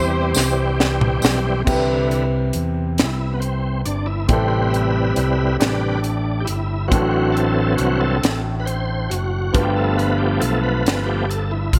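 Slow gospel in 6/8 at 46 BPM, uplifting and jubilant, cut from a longer piece in C major moving through Cmaj7, Am7, D7/A and G7. A clear saxophone section with vibrato sounds the melody only until 0.8 seconds, a jingly tambourine joins briefly from 0.3 seconds, and a crisp, airy fusion drum kit with a high-tuned snare and punchy kick enters at 0.4 seconds with a fill. From 1.7 seconds the bright, shouting tonewheel organ takes a lightly overdriven solo with key click, chorus vibrato and slow rotary speaker over a warm baby grand piano and a punchy, amped fingered electric bass, all set in a moderate echo chamber reverb.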